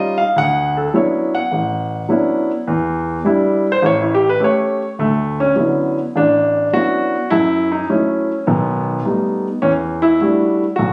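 Warm and swinging, this solo jazz fragment cut from a longer piece moves at 103 BPM in D major, with an up-front grand piano carrying the full 10.9 seconds alone, its rich Dmaj13, Em7 and A7 harmonies returning to Dmaj13 at 5.0 seconds before moving through F#m7, B7b13 and Em11, captured on a phone in the room and finished with light studio reverb and compression.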